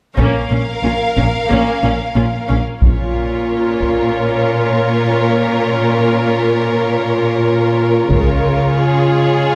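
Dark and dramatic, this cinematic orchestral film-score fragment moves at 91 BPM in Bb minor. A lush, up-front violin section with a soft attack and a focused cello section carry the opening over a smooth viola bed, a bowed double bass section and heavy-stick taiko ensemble hits. At 2.8 seconds a distant chamber violin line holding Db5 and a roomy, dark French horn section enter in the background as the music builds, the taiko and double basses returning at 8.1 seconds as the harmony shifts from Bbm to Db, all framed by a moderate scoring-stage reverb.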